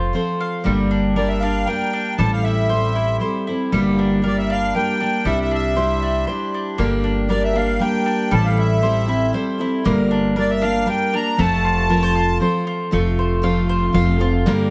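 The recording sits in a moderate studio reverb that gives this short cut from a longer acoustic folk piece an intimate, reflective air. At 117 BPM in a straight 3/4 and G dorian, a bright, full-bodied picked steel-string guitar carries the accompaniment up front. Above it, a mandolin with doubled strings spins woody arpeggios, while a thumpy pizzicato upright bass on gut strings anchors the low end. From 1.2 seconds a reedy, sweet accordion with light tremolo tuning steps forward as the solo voice, over chords moving among Gm, Am7, Cadd9 and F. At 12.9 seconds the music turns to a new section, and a very quiet chamber string section enters with soft-attack, sul tasto sustained chords and light vibrato, adding a dark, smooth-topped shading for the closing moments.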